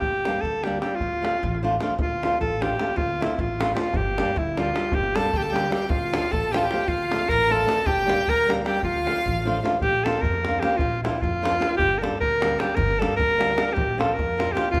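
Restless and fiery, this Balkan wedding-band excerpt in D minor drives along at 306 BPM in eighths with a straight 5/8 pulse, led by an up-front alto saxophone with a clear, smooth-topped classical vibrato over fingerpicked flamenco guitar, a woody, growly pizzicato upright bass and a tight davul, while a bright, focused bowed violin adds a second line from 5.2 to 9.6 seconds and the harmony shifts from Gm and Dm to Bb at 9.8 seconds, all set in a wet recital hall.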